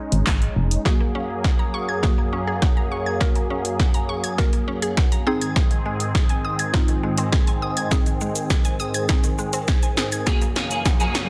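Dance-pop at 102 BPM with a carefree, summery mood, built on a punchy, tape-tinged analog drum machine of kick, snare, handclaps, hi-hat and shaker, with a short burst of round, dark FM bass near the start and an evolving, detuned supersaw swell holding sustained chords under phaser and sidechain pumping. From 0.9 seconds two woody, mallet-like FM synth plucks enter, one mellow and chorused playing accompaniment, the other bright with phaser and delay tracing arpeggios, as the chords move from Gbadd9 to Ab through a build-up and drum fill. At 10.3 seconds a slightly broken-up, picked electric guitar riff with ensemble chorus joins, and a background riser closes this dense, heavily limited excerpt in light reverb.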